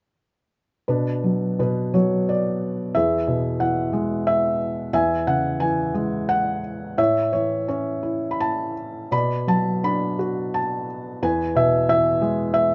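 Classical solo piano in a brooding, cool mood: a felt-muted upright plays alone from 0.9 to 12.7 seconds in a three-beat metre with free, rubato timing. Its soft, intimate, vintage tone sits up front, moving through Bm, Eadd9, C#m/E and A before returning to Bm and closing on E. A moderate studio reverb surrounds the piano, and the high end is rolled off in this short excerpt from a longer piece.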